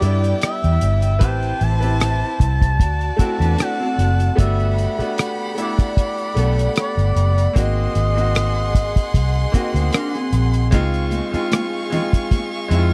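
A foam-muted, round electric bass and a cloth-damped, thuddy drum kit sit up front in this lush, cinematic 1970s-style soul excerpt, with a smooth, chorused synth lead carrying the bittersweet melody until 10.0 seconds over a vibrato-rich violin section, a brilliant grand piano, brief clean riffs from a mellow electric guitar, and ringing, high-tuned congas entering in the background at 10.7 seconds, all in a dry, close studio sound.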